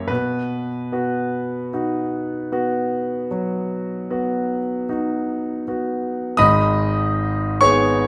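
The recording places a bright concert grand piano up front in a recital hall with moderate reverb that lets each note bloom and linger. This is a serene, nostalgic romantic nocturne for solo piano, played at a slow, unhurried pace with a free, rubato feel in four. The instrument has a brilliant, natural tone, with deep bass reaching down to G#1 and long sustain carrying the phrases up to D#6. The opening passage rests on a B chord, and at 6.4 seconds the music moves into a new section over a G#m chord. The piano plays alone for the full 8.1 seconds of this short passage, which is cut from a longer piece.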